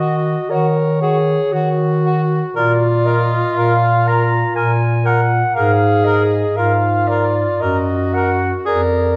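A slow, rubato 3/4 pulse at 59 BPM sets the pace for this short fragment of a solemn, elegiac classical piece for single-reed quartet in E-flat minor. A distant, soft-edged clarinet carries the melody in its upper register, shadowed by a clear alto saxophone with light vibrato singing a second line beneath it. A warm tenor saxophone, also roomy and gently attacked, supplies the inner accompaniment and falls away at 8.8 s, while the dark bass clarinet sits up front with a smooth top, anchoring the low end. The harmony moves from E-flat minor through bare B-flat fifths, first plain and then over A-flat, before settling on E-flat minor over G-flat. A wet concert hall reverb and a dark, warm production wrap the ensemble in a mournful glow.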